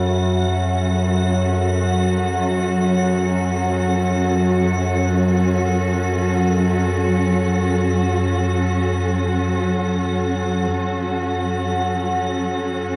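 A warbling, resonant analog drone with chorus, set in F# minor and tuned to A4 = 436 Hz, opens this ominous, vast dark ambient excerpt in free time. It is joined at once by a bowed chamber cello section holding expressive sustained chords with vibrato and shimmer reverb, a crystalline, airy glass pad with chorus and shimmer, and very quiet metallic tubular bell arpeggios. The drone and cellos sit up front in a cavernous cathedral reverb with a 6.8-second decay, and at 10.7 seconds the bells stop while a filter sweep shapes the drone through to 13.0 seconds.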